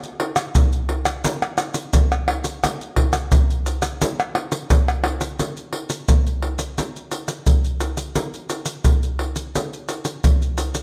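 A straight 4/4 samba groove at 87 BPM carries this sunny, festive short cut from a longer piece, with maracas, pandeiro, tamborim and a tight surdo playing acoustic percussion close, dry and up front throughout, a light reverb around them, and a new section arriving at 5.4 seconds.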